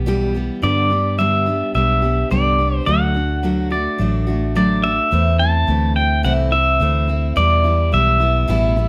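Lonesome and heartbroken, this short cut of honky-tonk country sets a bright, full-bodied picked dreadnought acoustic guitar and a dark, round, foam-muted vintage electric bass up front, with a clean pedal steel guitar entering at 0.6 seconds to carry the melody in fingerpicked slides and volume swells, while a twangy electric guitar adds a brief tape-echoed second line from 3.7 to 5.0 seconds, all in a close, detailed sound with light reverb.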